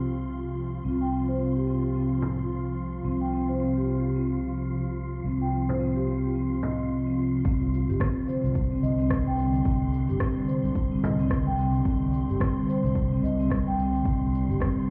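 Mystical and warm, this organic downtempo excerpt at 109 BPM sways on swung sixteenths as an ethereal, detuned pad with chorus and pumping sustains chords beneath woody, soft-mallet marimba arpeggios with delay, a round fretless electric bass that pumps up front, and a dark, breathy wind-like noise texture high above, while a dry, hard-hand frame drum taps in briefly from 2.2 seconds before an overdriven deep electronic kick arrives at 7.4 seconds and a crisp, tape-tinged kit of cabasa, hi-hat and rim click joins at 7.5 seconds, the whole mix bathed in lush hall reverb yet heard muffled as if through a wall.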